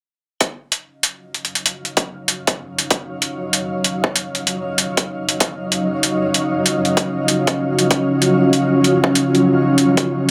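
Glitch hop at 96 BPM in Eb minor with a swung 16th feel, this funky, swaggering excerpt opens at 0.4 seconds with a punchy, overdriven electronic kick and a gritty, pitched-down, sampler-style hi-hat up front in a small room, then a bright, blurred granular cloud pad with its own reverb arrives at 1.7 seconds and a deep, detuned analog pad at 1.8 seconds sustains dark Ebm9 harmony through a filter sweep, with chorus, 12-bit sampler grit and sidechain pumping on the analog pad and pumping on the granular cloud too.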